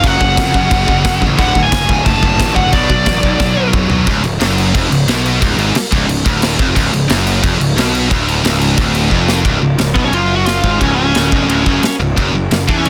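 A straight 4/4 pulse at 178 BPM drives this aggressive, heavy metal excerpt in C# phrygian dominant, with a big acoustic rock kit up front, its boomy kick, medium-tuned snare, toms, ride and bright crashes breaking into fills at 3.4 and 9.1 seconds. Two high-gain picked guitars, one scooped, grind out the riff in the background over a growly fuzz bass, while a smooth overdriven lead guitar with tape echo sings the melody from 0.0 to 3.7 seconds and returns at 9.9 seconds. Chords move from F#5 through D and Bm to a long stretch on C#, all in a dry, dense, heavily limited modern master.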